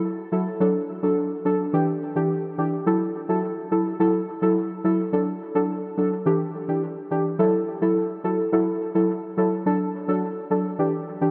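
A deep, warbling chord stab with a vintage, dark character plays alone through this 11.3-second fragment of a tough, hypnotic dancehall groove at 106 BPM in F# phrygian, sitting up front with its chorus and tape echo in a dreamy mix soaked in a huge ambient reverb as it cycles through F#m7, D and Em7.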